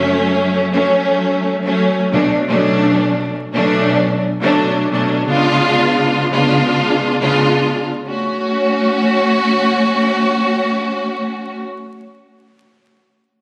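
Dark and tough, this boom-bap hip-hop excerpt at 86 BPM, with a swung 16th feel in F# harmonic minor, puts a lush, bowed studio string section up front, its expressive vibrato and smooth top carrying an F#m, Bm9 and C#7b9 progression, while a round, punchy dub fingered electric bass sits in the background until 2.3 seconds, heard through light studio reverb, vinyl crackle and the roomy character of a phone recording.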